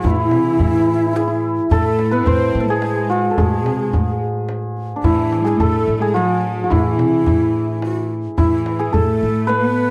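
Heard from the very start, a hypnotic, longing Persian modal ensemble in A avaz esfahan at 108 BPM in 3/4 sets an up-front, shimmering hammered santur on the melody with a slapback echo, while a breathy, unsteady ney with vibrato and a floating, sul tasto symphonic cello section carry second lines, a woody pizzicato upright bass anchors the low end, and a deep tombak plays until 9.6 s, the whole recording dry and close in a 1970s-style studio sound.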